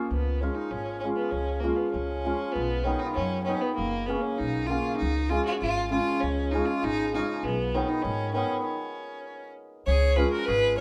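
A focused, bowed fiddle leads this virtuosic and wild Balkan wedding-band excerpt, its light vibrato carrying the melody up front in a lively two-beat metre. Beside it, a bright hammered dulcimer supplies shimmering, ringing accompaniment, while a pizzicato upright bass with steel strings adds a woody low end. The harmony moves among Db, Cb and Gb before the band hits a stop from 8.7 to 9.9 seconds. As the music returns to Db at 9.9 seconds, a second violin with a reedy, gut-string, period-style tone joins with a brief second line. The whole performance sounds like one group playing live together in a small, reverberant room, and the passage is cut from a longer piece.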